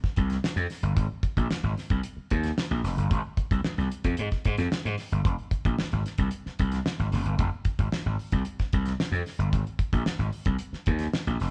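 Funk at 112 BPM with a hypnotic, funky groove, this short cut from a longer piece pairs a growly, overdriven electric slap bass, bright and punchy up front, with a damped 70s acoustic drum kit of hi-hat, tight kick and fat snare that sounds dry yet airy and carries vintage 12-bit sampler grit, both captured as a band playing live in one room with light reverb and cassette tape character.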